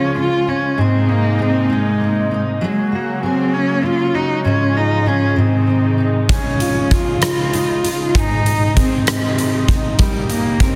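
Swaying and tender, this six-eight pop ballad in Db major drifts at 65 BPM as a dark, woody bowed cello sings the melody up front with vibrato over a full-bodied, double-tracked fingerpicked steel-string acoustic guitar and a distant, expressive string section holding soft-attack chords with portamento, until a huge arena drum kit enters at 6.3 seconds with a punchy kick, hi-hat, rim clicks and a softly clipped snare, all in light reverb under a dense, heavily limited modern master.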